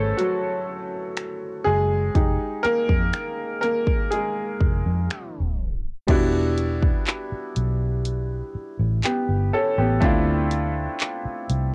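A slow, straight 4/4 pulse at 61 BPM carries this sensual, longing contemporary R&B excerpt, where a clear, worn grand piano with cassette-tape colouring takes a solo turn over minor-ninth chords from F#m9 to Fm9, a dark, round, foam-muted electric bass sits up front, and a layered electronic pop kit with a punchy kick, hi-hat, finger snaps, handclaps and crash, also tape-tinged, enters at 0.2 s, all in a light-reverb home-cassette sound whose tape stop from 5.1 to 6.1 s gives way to a second section moving through Em9 and Dm9.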